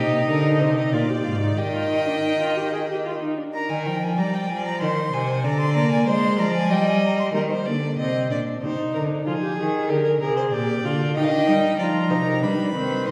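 A baroque-style string quartet fugue in E-flat major opens with all four bowed parts together at a driving, solemn 94 BPM in 3/4: a focused, vibrato-laden first violin carries the high melody over a smooth, even second violin line, a dark, expressive viola with portamento, and a clear cello bass. The viola drops out at 3.5 seconds and returns at 7.3, when the first violin falls silent until 11.2 seconds. The quartet sounds from further back in a reverberant recital hall, in a passage cut from a longer piece.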